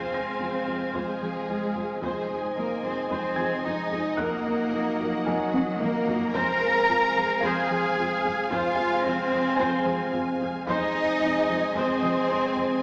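A hybrid orchestral and electronic film score excerpt, relentless and vast, where an up-front, rich cello section carries the bass beneath lush bowed violins playing the melody and a background second line, a viola section, a French horn section holding sustained chords, and a distant double bass section. A shimmering, retro pulse-width pad with chorus, a rubbery, hollow square bass riff, a very quiet deep sub bass and an intimate grand piano with audible action noise and tape echo add texture, while a compressed, saturated taiko ensemble drives from the background from 0.9 seconds with a fill at 5.5 seconds. The sound is heard from further back in a reverberant scoring stage, through a small-speaker character.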